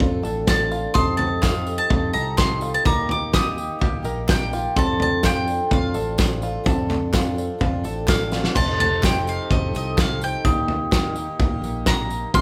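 A straight 4/4 pulse at 126 BPM drives this wistful, bittersweet indie folk passage, cut from a longer piece and built on a building arrangement over a Dm7, F7 and Eb progression. The loose indie drum kit sits up front with a punchy kick, fat snare and dark cymbals, toms and crashes, adding a fill at 8.3 seconds. Beneath it a fingered electric bass holds the low end, while a jingly tambourine and crisp, saturated group handclaps, entering at 0.5 seconds, sit in the background. The bowl-back mandolin carries the melody from 0.5 seconds, up front and picked with its double strings, as a close-miked glockenspiel with brass mallets adds a sparkling, bell-like second line. A shimmering, octave-doubled twelve-string acoustic guitar, twangy fingerpicked banjo arpeggios that stop at 8.6 seconds, and a reedy, breathing pedal harmonium holding mellow sustained chords fill out the background. The whole band plays live in one large studio room with a moderate reverb.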